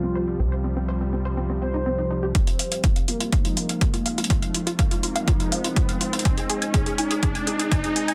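Set in a straight 4/4 at 123 BPM, this melodic techno cut in F dorian opens on a tight, nasal sequencer bass pulsing under sidechain pumping until 2.3 seconds, when a punchy kick and metallic, filtered hi-hats take over and a build-up begins, with a riser joining at 4.0 seconds. Throughout, a smooth portamento lead with vibrato and tape echo sings over a deep, moody ambient pad in the background, while a lush, detuned unison pluck spins arpeggios that pick up a filter sweep from 2.3 seconds, and a bold, brassy analog pad punctuates with chorused stabs. The mood is melancholic yet driving, moving from Csus4 to Fm7 and on to Ab in a dense, heavily limited mix with light reverb.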